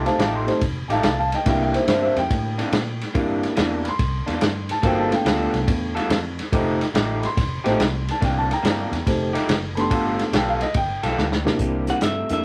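A rough rehearsal-room recording in a small room gives this laid-back, soulful electric blues shuffle, cut from a longer piece, its lo-fi character, swinging at 142 BPM in C mixolydian over ninth chords. A dark, woody upright piano and a slightly broken-up picked guitar riff through a small old amp ride over a round, foam-muted vintage bass and an up-front, muffled vintage drum kit with a punchy kick, hi-hat, ride and snare. A drum fill at 11.2 seconds leads to a brief, compressed fingered guitar melody entering at 11.9 seconds.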